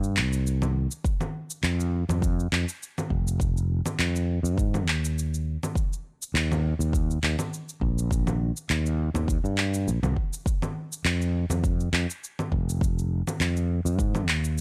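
A dry, gritty recording with the texture of cassette tape frames this short sunset chillout excerpt, which moves at 102 BPM in 4/4 with a light 16th-note swing. The mood is warm and smooth, carried by a sustaining fretless electric bass that sits up front with a growly, amped tone and a touch of tube saturation, ranging from F1 to Ab2 and playing across the whole 14.6 seconds. Layered electronic shaker, handclaps and congas run alongside it from the start, produced and up front with a bit of studio reverb. A deep, layered electronic kick drum joins at 1.0 seconds and holds until 14.1 seconds, also placed forward in the mix with studio reverb. The result is a warm, close-sounding groove built on bass and percussion alone.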